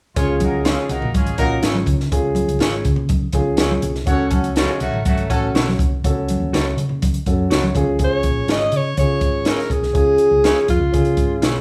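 Uptempo 1960s-style soul at 123 BPM in Db major with an uplifting mood, driven by a dry, up-front cocktail drum kit with a punchy kick and high-tuned snare, a round hollow-body electric bass, a woody upright piano, background congas with bright, thin skins, and slightly broken-up electric guitar stabs, while a mellow, distant horn section plays octave-doubled lines until 5.5 s before a vibrato-rich, jazz-style alto saxophone takes the melody up front at 8.0 s.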